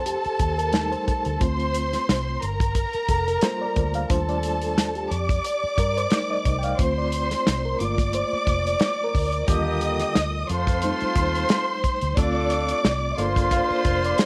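A mellow, reedy electric piano with fast tremolo takes the solo through this cinematic, smooth excerpt of lush 1970s-style soul in G minor at 89 BPM with a light 16th-note swing, backed by an expressive, bowed string section up front, a dark, round, foam-muted electric bass with tube saturation, a dry, damped drum kit with a tight kick and rolled-off top, and a present, jazz-style horn section that enters with stabs at 9.5 s, all in a small room.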